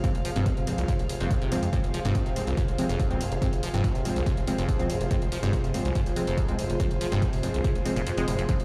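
Hypnotic and relentless, this short cut of driving peak-time techno runs at 142 BPM in F minor, held on a single F minor chord, with a dry, punchy kick up front that drops out between 8.1 and 8.5 seconds while an overdriven, layered hi-hat ticks above it. A squelchy, resonant acid bass riff with a filter sweep and digital delay twists over a gritty, saturated synth bass entering at 0.1 seconds, and both pump under sidechain along with crisp, wave-folded wavetable chord stabs carrying cassette tape colour and delay. An airy, breathy pad with a slow attack and chorus floats above, all set in a stone-room reverb that sounds like a big system playing in a bare room.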